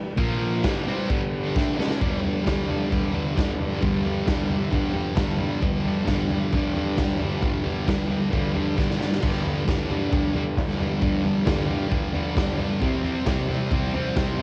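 Dry and close, this cassette home recording is a swaggering, raw garage rock cut in G major at 133 BPM in straight 4/4, taken from a longer piece. A thick, double-tracked fuzz guitar drives a picked, distorted riff up front, and a punchy acoustic drum kit with a medium-tuned snare, crash and toms and a dark, rolled-off top joins at 0.2 seconds. Underneath, a very quiet, mellow vintage combo organ holds clean chords with light vibrato from the opening moment, adding short fills, while the drums break into a fill around 8.8 seconds and the harmony moves from G to C near the close.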